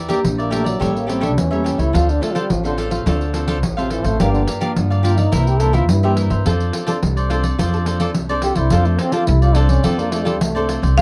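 Samba and choro in F major at 106 BPM in straight 4/4, this lively, sunny excerpt is cut from a longer piece and set in a dry, close 1970s-style studio sound with light reverb. A crisp, picked cavaquinho and a fingerpicked classical nylon-string guitar share the accompaniment from the start, joined at 0.1 seconds by a jingly, band-limited pandeiro with a vintage character. The upright bass enters at 0.2 seconds, woody and thumpy with gut strings, sitting up front in the mix. From 0.4 seconds a trombone takes a jazz-style solo as the second line, smooth on top with light vibrato, moving over a progression that runs from Em7b5 and A7b9 to Dm7, Gm7, C9 and a closing F6. At 11.0 seconds a dark, padauk-barred marimba struck with medium hard mallets sounds a single up-front F5 melody note.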